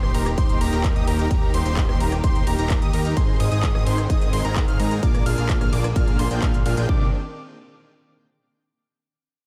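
This excerpt from a festival progressive house track opens straight into the drop, with a huge, detuned supersaw riff, a bold unison lead playing high arpeggios, lush bowed strings holding sustained chords in the background, and a fat, nasal analog bass, all breathing with sidechain pumping. At 129 BPM in 4/4 with a straight feel in C minor, the mood is emotional and euphoric. Harmony moves from Eb to Ab at 3.2 seconds and on to Bb7 before settling on Cmadd9 at 6.9 seconds, where a short new section begins. A punchy, tape-warm electronic kick sits up front from 0.4 seconds, while a big-room kit adds handclaps, crisp hi-hats, ride cymbal and rim clicks. Delay trails the lead and the supersaw, and light reverb with digital ambience surrounds the mix.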